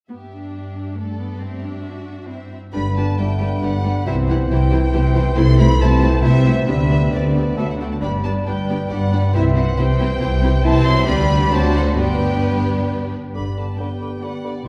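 A wet concert hall reverb places this lively, spirited classical-period movement for symphony orchestra further back in the room, a short cut from a longer piece in G major, moving briskly in 3/4 at 136 BPM. The strings open together at 0.1 seconds: a rich, focused violin section carries the melody with vibrato and a smooth top, while a second violin section adds a soft-attacked, portamento-inflected line in the background, over an even viola accompaniment and an expressive, close cello bass. At 2.7 seconds the winds and brass join, with an airy, tongued flute, a dark clarinet and a mellow cor anglais each adding distant second lines, a roomy bassoon filling in the accompaniment, and a tight horn section holding sustained chords with light vibrato. The double bass section enters at the same moment, up front and focused, playing the bass line in its low register until 13.7 seconds. The harmony circles through G, C and A minor before cadencing on D7 and returning to G at 12.0 seconds, giving the passage a bright, courtly lilt.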